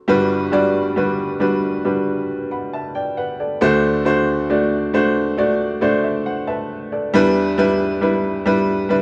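A clear, woody upright piano sits up front in a wet studio reverb, its short sustain rounded off by a soft top end in this tender, emotional pop excerpt in G major at 68 BPM. Playing alone throughout, the piano spans from deep G1 up to B5, moving from Gmaj7 to D7 with a brief fill from 5.4 to 7.1 seconds before settling on Em7.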